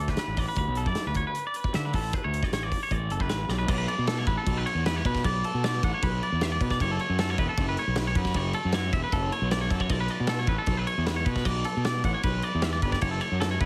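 Heavily squashed and radio-like with a dry sound, this bright, wistful slice of math rock and midwest emo moves at 154 BPM in a straight 4/4, tuned to A4 = 435 Hz. A clean, twangy electric guitar picks arpeggios through spring reverb over a round, overdriven fuzz bass, while a loose, roomy indie drum kit with a punchy kick and dark cymbals enters at 0.1 seconds. A drum fill at 3.5 seconds leads into a new section where the chords move between Bm7 and F#m until the cut.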